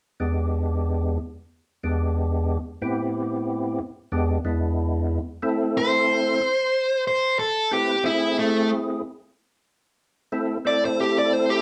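Swinging lightly at 92 BPM in 4/4, this mournful, smoky blues fragment in A harmonic minor opens on a fat, percussive tonewheel organ with key click, third-harmonic percussion, light overdrive, chorus vibrato and a slow rotary speaker, carrying the E7#9 and Am7 changes until a dark, picked, overdriven electric guitar steps up front at 5.8 s for a solo over A minor, with the band heard playing live in one room under a wet studio reverb.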